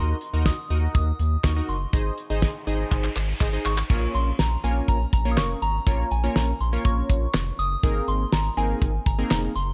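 A damped 70s drum kit sits up front with a fat snare, tight kick, hi-hat, handclaps and crash cymbal, entering at 0.2 s and playing a fill from 2.9 to 3.9 s while an electronic riser builds in the background. This cool, driving synth-pop excerpt moves at 122 BPM in Bb minor, with a round, nasal analog bass holding the low end, a funky, detuned sawtooth polysynth comp carrying chorus and filter sweeps, and a soft, pure FM synth bell melody treated with chorus, phaser and slapback echo. The production is dark and warm in a small room, with harmony moving from Ebm and Ab to Bbm and Abadd9.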